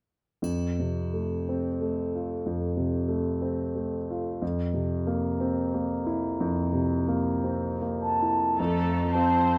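Closely miked with light reverb, this short excerpt from a longer romantic movement for piano and orchestra has a detailed, intimate sound. A warm concert grand carries the lyrical melody up front, its open tone and deep bass sitting in a low-to-middle register, while a triangle adds a bright, faint shimmer briefly at the start. The feel is unhurried and rubato in 4/4, with the harmony moving from F to C7 over F and back. At 8.0 seconds, an airy, mellow flute enters as a distant second line with a soft attack and straight tone. At 8.6 seconds, bowed viola and cello sections join underneath: the violas are focused with vibrato, and the very quiet cellos are smooth and even, giving the closing moments a lush orchestral cushion.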